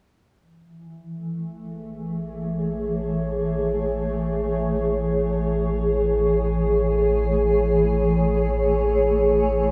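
Ambient and weightless, this luminous fragment opens with a round, deep analog bass holding a low A from 0.3 seconds, joined at 1.1 seconds by an up-front granular cloud pad of blurred, detuned sustained chords that bloom slowly with their own reverb, all set in a vast, echoing cathedral-like space.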